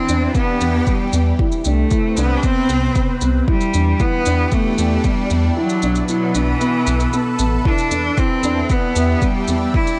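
Cinematic and hypnotic, this cut from a longer piano and strings electronica piece moves at 115 BPM in E minor, where a bright, focused bowed cello with vibrato carries the melody over a lush, detuned unison pad that breathes with chorus, phaser and sidechain pumping. A soft, boxy felt-muted upright piano with audible action noise plays a mellow riff through digital delay and shimmer reverb, while a deep, rumbling detuned saw bass and a produced shaker sit beneath. An up-front electronic kick drives the groove but drops out from 5.6 to 7.7 seconds over the B7sus4 chord before returning on Em7.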